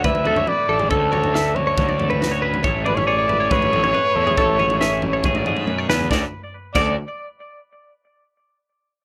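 A straight 4/4 pulse drives this math rock and midwest emo passage, cut from a longer piece, with a crisp fusion drum kit working crash, kick, snare and toms in a small, pumping room, its bright cymbals, high-tuned snare and tight kick carrying a gritty, saturated edge. The mood is luminous yet wistful as a breathy trumpet holds the melody up front, dark and whispered with vibrato, soft attacks, scooped notes and a smooth top, trailed by analog delay. Two clean, twangy, compressed twelve-string electric guitars sit underneath: one plays accompaniment across the low and middle register, while the other, set further back, picks high arpeggios through its own analog delay. A fuzz-soaked picked electric bass growls beneath them, overdriven and direct. The harmony rests on Amaj7 until a drum fill at 5.7 seconds leads into Dmaj7 at 6.1 seconds, all within a rough home-demo mix touched by light reverb.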